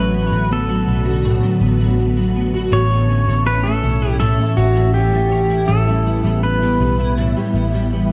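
A floating, ethereal dream pop fragment in A mixolydian at 81 BPM opens with a shimmering, octave-doubled twelve-string acoustic guitar picking up-front chorus-and-delay arpeggios over a round, foam-muted electric bass and a warbling, detuned airy pad holding slow-attack chords, while a twangy, clean pedal steel guitar sings a delayed slide melody with volume swells until 7.1 seconds, all moving from Bm7/A to A to Em/A inside a lush hall reverb and a dark production.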